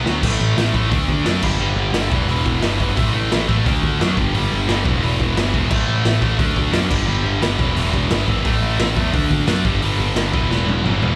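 Urgent and raw, this short punk rock cut from a longer piece drives a tight, bright, double-tracked distorted guitar riff up front through a repeating A5, D, G5, Em cycle, with a punchy, fuzzy picked electric bass pushing beside it. A gritty, saturated garage drum kit with a boomy kick, medium-tuned snare and rolled-off top pumps in a small room, opening with a fill and closing with another from 10.5 seconds. The whole performance comes across as a live gig heard through the venue's PA, carrying a touch of club reverb.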